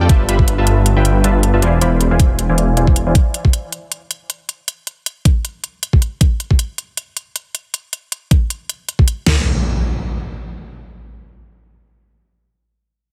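A punchy supersaw stab opens this lush, bittersweet future bass passage, its riff shaped by a filter sweep, delay and sidechain pumping over G13 and E7b9b13 chords until 3.1 seconds. Beneath it, a thick detuned saw bass with chorus and its own sidechain pumping sits up front, blending sawtooth, square and sine layers into a saturated, mellow low end. A layered pop drum kit, overdriven and re-recorded in a small room, drives a swung half-time feel with a knocking kick, deep snare, toms and crash cymbal. Crisp electronic hi-hats run alongside the kit until around 9.2 seconds, and at 9.3 seconds an electronic impact arrives for the closing section. The recording carries light reverb and a heavily compressed, radio-like sound, and it is cut from a longer piece.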